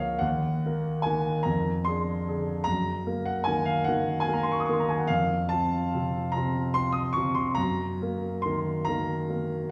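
A romantic classical nocturne for solo concert grand piano, yearning and melancholic, this brief fragment of a longer piece unfolds in a rubato 12/8 as the piano's open tone, deep bass and long sustain ring through a wet recital-hall reverb heard from further back in the room.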